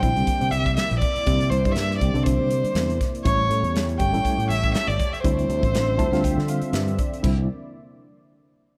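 This bright, slick electric jazz fusion excerpt opens with everything at once: a bowed solo violin carries the melody up front with a rich, focused tone and vibrato, over a gently swung sixteenth-note feel. Beneath it, a reedy, barky electric piano, lightly overdriven and pulsing with fast tremolo through its built-in speakers, plays the accompaniment. A detuned sawtooth pad sits in the background, sustaining chords with a slow attack, long release, chorus, and an evolving, resonant filter swell and moving notch. Fingered electric bass, direct and amped, anchors the low end alongside a polished, airy studio drum kit with a punchy kick, medium-tuned snare, hi-hat and crash over bright cymbals. The harmony moves from C9 to A7 to Dm9. The electric piano takes a fill from 5.7 seconds, the violin stops at 6.7 seconds, and the progression returns to C9 at 7.2 seconds, all under light reverb.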